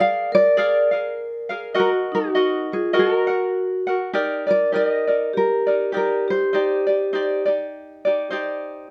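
A thumb-plucked tenor ukulele carries the melody with a light, up-front tone and plate reverb in this languid, relaxed Hawaiian piece at 101 BPM with a gentle swing, joined by a mellow, ringing soft-mallet vibraphone second line with its motor off and a fingerpicked second tenor ukulele accompaniment, shifting from Eb minor to Eb major at 4.2 s before the melody and vibraphone stop at 7.4 s and the accompaniment plays alone until 8.9 s in this short cut from a longer piece.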